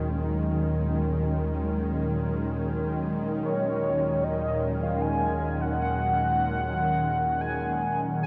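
A velvety synth lead with chorus, vibrato and tape echo enters at 3.4 s to sing an up-front melody over a glassy, ethereal FM pad holding sustained chords on Ebm7 through a filter sweep, a deep, round sub bass that fades out, and a tense, string-like bowed drone on Eb3, all unfolding in free time in Eb minor in this serene, spacious ambient excerpt set in a vast, echoing space.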